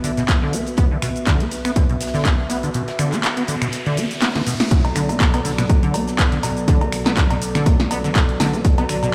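Raw and trippy, this acid house excerpt rides a squelchy, resonant sawtooth acid bass riff with filter sweeps and tape echo, over a punchy, overdriven analog drum machine of handclaps, cowbell, cabasa, finger snaps, hi-hat and snare, a very quiet, dark acoustic studio kit, an up-front, tape-warm electronic kick, and a warbly, lo-fi, nostalgic pad with sidechain pumping. The kick drops out at 2.7 s while a background riser sounds, and a drum fill and band accent lead into the drop at 4.7 s, where a smooth, detuned analog pad with ring modulation enters on mellow sustained chords. A stone-room reverb gives the mix the feel of a big sound system playing in a bare space.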